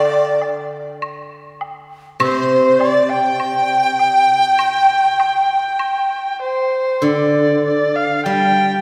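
Moving in a loose, rubato 4/4 around 100 BPM, this graceful, tender passage from a longer Chinese traditional chamber piece sets a dark, woody, bowed erhu in front, singing the melody with vibrato and portamento, while an airy bamboo dizi with a buzzing membrane traces a mellow second line until 6.4 s. Beneath them, a silvery, ringing steel-string zither plucked with fingerpicks provides accompaniment throughout, and a close, dry woodblock adds light percussion between 0.4 s and 5.9 s. The ensemble sits in a wet church reverb, and the music shifts into a new section at 7.0 s.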